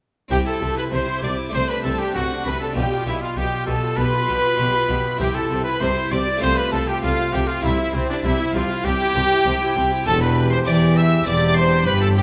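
A clear solo trumpet sits up front and carries the melody in this festive, brilliant excerpt from a baroque-style concerto movement, its tone smooth at the top. A chamber violin section also plays the melody, higher up, with light vibrato and a reedy gut-string sound, while a second violin line and a viola section stay in the background. A nasal cello section and a rich, more distant double bass section share the bass, both bowed in period style. A plucked French-style harpsichord with octave strings supplies the accompaniment, and the whole ensemble plays together from 0.3 to 12.2 seconds in a straight 4/4 over chords that move from C through G7/B, F/C and Em before landing on C/E. A moderate recital-hall reverb gives the music a sense of space.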